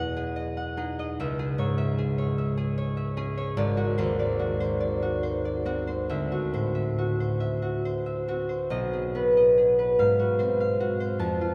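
This classical solo harp piece, a graceful and dreamy fragment of a longer work, runs 11.5 seconds. The concert harp plays alone throughout, fingerpicked and up front, with a ringing, warm acoustic tone that spans from G#1 up to A5. It moves in a lilting 6/8 with a free, rubato feel, tuned slightly below standard pitch at A4 = 436 Hz. The harmony drifts through rich colors, opening on Emaj9 and passing through C#m, G#7#11, D9 and B6 before settling on G#6. A wet cathedral reverb with a long 5.0-second decay surrounds the instrument, giving the notes a spacious, hovering halo.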